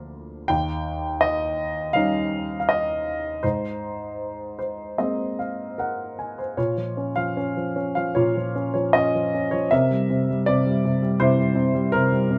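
Rubato shapes this short passage of lyrical classical solo piano, its 4/4 pulse drifting between 73 and 84 BPM. A baby grand piano carries everything alone, its worn tone placed up front and ranging from D2 to Ab5. The mood is peaceful and warm, with harmony moving from Eb7 to Abadd9 before a piano fill arrives at 4.2 seconds. At 6.6 seconds the music settles into Bb minor, resting on Bbm and then turning toward C7. Light reverb gives the playing a gentle sense of space, and the passage is cut from a longer piece, ending at 12.4 seconds.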